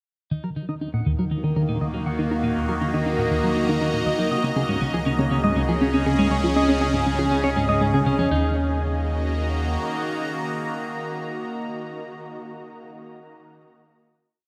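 A bright, detuned wavetable pad with a slow attack carries slowly morphing, phased chords from 1.3 s over a tight, wave-folded sequenced synth riff looping in six steps against the bar, a clean, compressed electric guitar fading in with a nine-step arpeggio through tape echo and shimmer reverb, and a round sine sub bass fading in beneath, set in a huge room with a 7.5-second reverb tail in this mysterious, expansive piece of ambient space music that settles on a final chord from 8.3 s.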